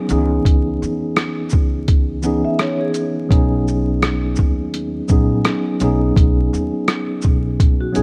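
A mellow, clean tine electric piano opens this nostalgic, dreamy lo-fi hip hop fragment through a low-pass filter, quickly joined by woody pizzicato upright bass and an up-front, compressed, muffled sampler-style kit with a thumpy kick, hi-hat, rim click and shaker in a swung 16th-note feel, while a metallic, ringing vibraphone with slow motor vibrato, a low-pass filter and analog delay appears at 2.4 seconds and again at 7.8 seconds over C#m7 moving to B6, the whole set in light reverb with vinyl crackle.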